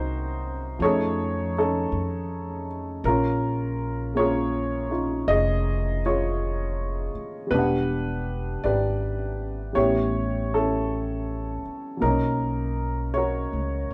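Jazz ballad with a gentle swing and a tender, late-night mood, played live in one room with a moderate studio ambience. An intimate, slightly detuned upright piano carries the accompaniment up front, its woody tone coloured by audible action noise, while a growly pizzicato upright bass with steel strings sits close beside it. The chords pass from Cm7b5 and F7alt through A#m7, Em7 and A9 before arriving at Bmaj9 at 12.0 seconds, in a short fragment cut from a longer piece.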